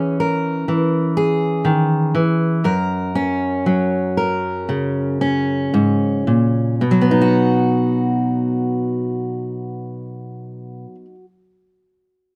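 A fingerpicked steel-string acoustic guitar plays alone and up front in this short, pastoral and peaceful folk fragment in B major at a slow 55-62 BPM in 4/4, its warm, auditorium-like tone sitting in light reverb across a range of F#2 to A#4 as it eases from C#m/E to F# while slowing down through the first 6.8 seconds, then settles onto B for the closing passage that runs to 11.2 seconds.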